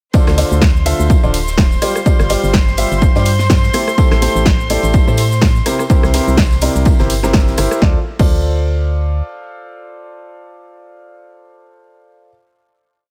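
Energetic and soulful, this piano house piece moves at 125 BPM in D minor with a swung 16th feel, built on a clear, woody upright piano chord riff that carries through the drop and rings on into the final chord until 12.3 s. An up-front electronic four-on-the-floor kick drives a punchy analog drum machine with programmed hats, snare backbeat, shaker, ride, rim and crash, while a very quiet, dry reggae drum kit breakbeat and a background tambourine fill in the texture until 7.8 s. A hollow, organ-like FM bass plays a dark syncopated riff, and a studio violin section holds high chords with light vibrato and a reedy gut-string tone; the piano, bass and strings pump against the kick in a small room ambience.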